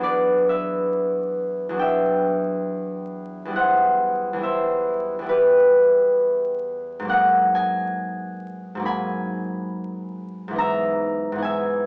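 A solo concert harp opens in E minor, its fingerpicked strings ringing up front across a span from E2 to B5, in a serene, graceful classical piece. The tempo sits around 68 BPM in 4/4, but the beats are uneven and the phrasing moves with rubato, drifting from Em9 through Cmaj7#11/E and G#m9 to Emaj7#11/G# by 10.6 seconds. Light reverb surrounds the warm harp, while vinyl crackle and a small-speaker sound give this short cut from a longer piece an aged, intimate quality.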